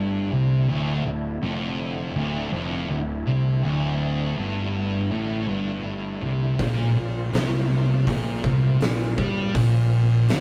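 A rough rehearsal-room recording with a moderate stone-room reverb gives this ominous, sludgy stoner and doom metal fragment a raw, enclosed weight. Two dark, picked fuzz guitars grind out a distorted riff, one sitting up front, while a growly overdriven fingered bass rumbles beneath them in the background and a reedy tonewheel organ with key click, slow rotary speaker and chorus vibrato holds sustained chords, also in the background. At 6.6 seconds the harmony moves from D minor to a B-flat power chord as an oversized, low-tuned acoustic drum kit enters, with a punchy kick, fat snare and hi-hat pumping in the bright stone room.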